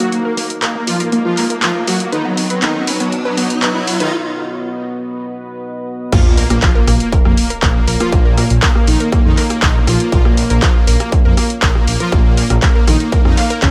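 Melodic techno at 120 BPM in Bb phrygian, melancholic and cinematic, this excerpt opens with a build-up where a smooth, soft-attack supersaw carries the melody over an eerie, inharmonic FM bell line, a deep, warbling ambient pad, and a lush unison pluck with 12-bit sampler grit playing arpeggios. The pluck and supersaw are both under filter sweeps while a techno kit of crash, handclaps, hi-hat and rim click ticks along, with tape echo on the supersaw, bell and pluck and sidechain pumping on the synths. A background riser and sub drop enter at 0.8 seconds, leading through a break into the drop at 6.1 seconds, where a distorted, up-front electronic kick and a menacing, swelling detuned saw bass arrive with an impact. The chords move from Ebm to B and settle on Bbm for the drop, all under light reverb.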